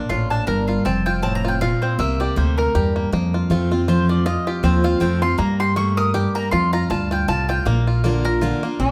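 A woody, double-strung mandolin takes the solo in this driving, virtuosic bluegrass clip in swung 3/4, set against a bright, full-bodied jumbo steel-string guitar sitting up front with audible finger squeak. A twangy, percussive banjo rolls arpeggios while a dark, thumpy pizzicato upright bass with gut strings anchors the low end, all in a light reverb. At 8.8 seconds, just as the passage is cut off, a metallic, nasal lap resonator guitar played with slide and fingerpicks slips in up front.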